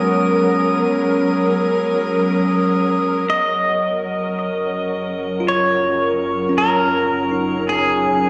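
Serene and luminous, this ambient passage in a slow, straight 4/4 is cut from a longer piece and sounds like a home recording on cassette, bathed in a wet spring reverb. From the start, an evolving, detuned wavetable pad holds sustained chords up front, softened by ensemble chorus. A bell-like, clean electric piano plays arpeggios, while a tense, string-like bowed drone sits in the background and a glassy texture of drifting overtones hovers high above. At 3.3 seconds the harmony moves from G#madd9/F# to F#maj7, a filter sweep begins on the pad, and a pedal steel guitar enters up front with a compressed melody played with fingerpicks, slide and volume swells, colored by cassette tape and analog delay. At the same moment a muted, veiled double bass section fades in, distant and dark with a light vibrato, giving the close a low, bowed foundation.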